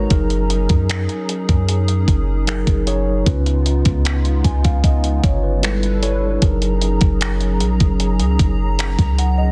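Contemporary R&B at 76 BPM in F# major, this tender, romantic fragment of a longer piece pairs a mellow tine electric piano and a hollow, flute-like pad with ensemble chorus over a deep, round 808-style bass and a crisp, up-front 8-bit drum machine of thumpy kick, hi-hat and finger snaps, its snare overdriven and soft-clipped, moving through F#69, C#7 and a brief G69 before returning home, all in a dry, dense, heavily limited modern mix.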